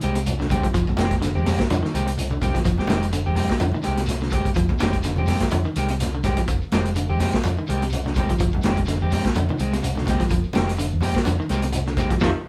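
A funky, intense afrobeat groove at 126 BPM in 4/4, with a light sixteenth-note swing, sits on a single F minor ninth chord in F dorian throughout this short cut from a longer piece. The vintage acoustic drum kit is up front, with a punchy kick, a medium-tuned snare and hi-hat, its sound mid-forward and rolled off on top. Underneath, a hollow-body short-scale bass, fingered and amped, lays down a dark, round bass line in the low register. A bright, clean semi-hollow guitar picks arpeggios, while a second electric guitar at the edge of break-up adds slightly gritty picked stabs across a higher span. Grainy, band-limited shekere and low-tuned, ringing congas, the latter entering at 0.3 seconds, sit in the background. The whole band plays live together in a small, wet-sounding room and hits a shared accent at 12.2 seconds.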